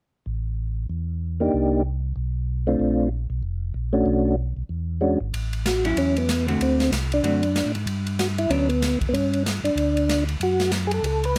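A round, dark organ bass line opens this swinging, greasy soul jazz organ trio excerpt at 189 BPM, joined at 1.4 seconds by a flute-like, percussive organ melody with chorus vibrato and slow rotary speaker, while an airy big-band drum kit with punchy kick and ride enters at 5.3 seconds and a picked hollow-body jazz guitar adds brief clean accompaniment, all in a dry sound with both organs up front.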